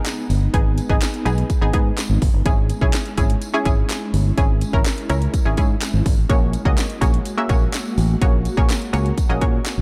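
Dark, warm production with digital ambience frames this energetic, confident dance-pop excerpt at 125 BPM in C# dorian, where a house drum kit with punchy kick, cracking snare, handclaps and metallic hats sits up front beside a round, amped fingered electric bass that enters at 0.3 s, a bright, detuned sawtooth analog pluck with chorus and sidechain pumping carries the accompaniment, an ethereal, airy pad with ensemble chorus and reverb holds mellow sustained chords in the background, and a jingly tambourine adds sparkle behind them over G#m, C#m and F#add9.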